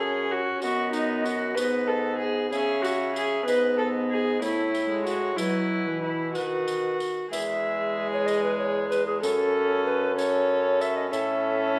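Festive and courtly, this short excerpt from a Renaissance-style consort dance moves at 63 BPM in a straight 6/8, counted in dotted quarters, in E major. An airy tenor recorder carries the melody with vibrato and a tongued chiff on its notes, its highs rolled off into a mellow wooden tone. Beneath it, a bowed viola plays a second line with a rich, reedy gut-string sound and light period-style vibrato, while another viola, equally reedy but with a nasal edge, fills in the accompaniment lower down. A bassoon with a warm, vintage color anchors the bass, and a jingly tambourine joins at 0.6 s and falls silent at 11.4 s. The harmony passes through G#m, C#m and A to a suspended B before settling on E, with the whole consort set in the generous reverb of a recital hall.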